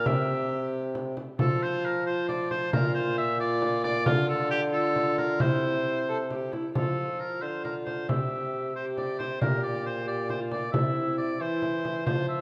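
A clear oboe with light vibrato carries the melody of this courtly, festive renaissance-style consort dance in a straight 6/8, sounding slightly distant in the room yet still up front. Beneath it, a single bowed viola with a gut-string, somewhat reedy tone plays a second line in period style, while a mellow solo bassoon holds down the bass. A small, bright frame drum played with soft hands adds light percussion from 0.1 seconds to 12.3 seconds. The harmony moves through F, C, B-flat and D minor chords, and the second half begins at 6.8 seconds. A recital hall reverb with a 1.9-second decay lends the dark, gently warm production a spacious glow, and the passage is cut from a longer piece.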